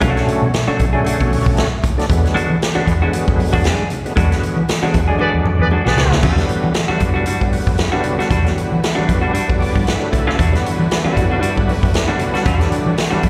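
A swung sixteenth-note funk groove in 4/4 rides on a punchy big-band drum kit and a dark, foam-muted fingered bass, with distant, very quiet congas and a clean, compressed hollow-body guitar whose harmonic tremolo shimmers over Bm7 and E9 in this funky, cool excerpt from a live gig heard through the venue's PA. A gritty, overdriven tonewheel organ adds stabs through a slow rotary speaker, and a band accent leads to a drum fill and a brief, clear horn line at 5.2 seconds. From 6.2 seconds, lush bowed strings sustain Em9 in the background, and the organ takes a fill at 9.3 seconds, all set in a recital hall's reverb.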